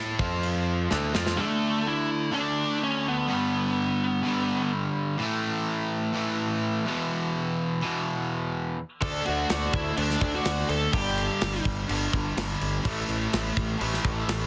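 Powerful and energetic, this hard rock excerpt at 126 BPM in 4/4 rides on a bright, double-tracked overdriven semi-hollow guitar riff that runs throughout, while a growly, punchy picked electric bass and a tight metal drum kit with a softly clipped kick open the track and close their first pass with a drum fill at 0.9 s. A warm, high-gain lead guitar with distortion and digital delay carries the melody from 1.4 to 4.7 s and again from 9.0 s. When bass and drums return at 9.0 s, a woody mandolin adds a second line in the background, and light reverb sits inside a dense, heavily limited modern master.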